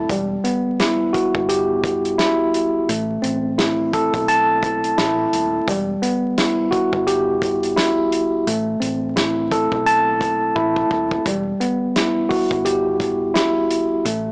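A blown-out, overdriven recording with vinyl crackle, a small-speaker sound and light small-room ambience gives this boom-bap hip-hop passage, cut from a longer piece, a tough yet reflective character. At 86 BPM in 4/4 with a swung sixteenth-note feel, it sits in E minor and alternates between Emadd9 and Am chords. A worn, slightly out-of-tune tine electric piano carries the accompaniment up front, mellow and clean in tone, filtered at both ends of its range. An acoustic soul drum kit of kick, snare and hi-hat supplies a warm, mid-forward groove with a fat snare, a tight kick treated with soft clipping and a rolled-off top, adding a drum fill from 10.6 to 11.3 seconds. Beneath them, a dark, round hollow-body short-scale electric bass, fingered and amped with tube saturation, sits well back in the mix in a low register.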